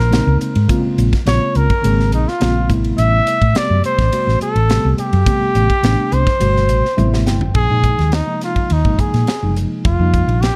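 A trumpet with vibrato leads this driving, nocturnal electric jazz fusion excerpt at 105 BPM in a straight 4/4, its up-front solo line carrying analog delay over a dark, lightly reverberant production. A round, hollow-body fingered electric bass and a crisp, airy drum kit with a punchy kick and high-tuned snare hold the groove. A mellow, reedy electric piano with fast tremolo voices chords moving from Bbm9 to Am9, and piano and drum fills at 6.7 and 7.0 seconds lead into a new section at 7.6 seconds built on Bb9sus4 and F9sus4.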